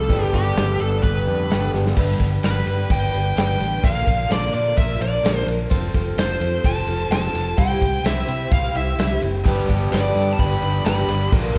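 Jangly and nostalgic, this folk rock and heartland rock passage, cut from a longer piece, puts a bluesy, distorted lead guitar up front over a bright, shimmering twelve-string acoustic guitar, a round fingered electric bass and a punchy, airy country drum kit. A very quiet string section adds bowed chords with vibrato and portamento, while a double-tracked, compressed overdriven electric guitar riff plays at the start and returns at 9.4 seconds. A drum fill at 1.7 seconds leads into the main section, where the harmony moves from G through Bb, F and C back to G, all set in the moderate reverb of a concert hall.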